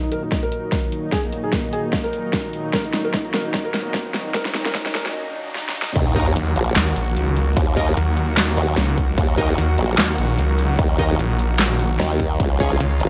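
This heavy, aggressive wobble dubstep excerpt opens in Eb minor with a soft, felt-muted upright piano carrying the melody through tape echo, its mellow tone and audible action noise set against a lush, airy unison pad of sustained chords that pumps under sidechain and chorus. A big-room dance drum kit with a huge snare and metallic hats drives the build-up at 149 BPM in half-time with a light swing, joined by an overdriven, punchy electronic kick, while drum fills, a filter sweep and a very quiet riser and sub drop push toward a brief break. At 6.0 seconds the drop lands with an impact, and a formant-sweep wobble bass enters up front, saturated and compressed with chorus. Moments later a snarling distorted saw bass adds a detuned, growling layer with a moving notch, while an evolving supersaw stab sits in the background through cassette tape and tape echo. Near the end the harmony shifts from Ebm to Dbadd9, and the whole mix carries light reverb.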